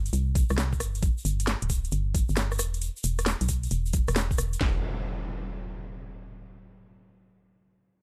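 A skippy, swung two-step shuffle drives this moody UK garage fragment, built from two layered, tape-toned electronic drum kits up front, one with a knocking kick and the other with metallic hats and rim clicks, each adding a cracking snare, along with a grainy, bright tube shaker in a small room and a hollow, dark, organ-like FM bass with sidechain pumping and a filter sweep, until an up-front electronic impact arrives at 4.6 seconds over a dry mix marked by lossy compression artefacts.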